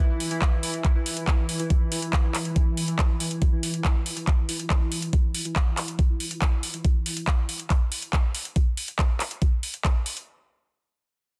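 A straight 4/4 pulse at 140 BPM drives this hypnotic psychedelic trance excerpt, with an up-front, knocking overdriven kick and a techno kit of handclaps and metallic hi-hats under a bright, detuned gated texture of pulsing, sidechain-pumped chords on E5 that carries a filter sweep until 6.8 seconds, while a dark, lo-fi, warbling tape-like pad sits in the background and fades out by 3.4 seconds, all within a dense, heavily limited modern master and digital ambience.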